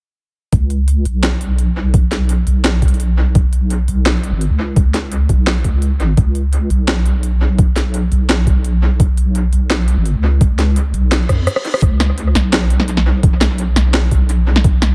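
An echo-heavy digital ambience frames this spacious, cinematic half-time drum and bass passage, cut from a longer piece. A deep, dark wobble bass with a detuned, saturated tone and chorus sits up front beside a gritty, overdriven electronic kick, while a layered kit of cracking snare, crisp hats and rim clicks trails dub echo. At 11.3 seconds a drum fill and an electronic reverse cymbal lead into a brief break at 11.5 seconds.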